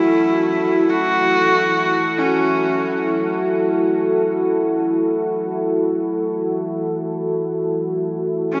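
A clear, biting horsehead fiddle carries the melody across this short ambient excerpt, its single bowed player producing an earthy, husky tone with light vibrato and portamento, set up front within a diffuse ambient delay. Beneath it, a deep, dark pad holds sustained chords on an F#m harmony, its detuned sawtooth and sine layers with a sub octave giving a moody character, shaped by a slow attack, long release, chorus and its own reverb. Both parts sound together from 0.0 to 8.6 seconds in free time, tuned to A4 = 441 Hz. A huge reverb with a 9.5-second decay surrounds the whole, and the top end is rolled off above 7.8 kHz, lending the piece a vast, ominous atmosphere.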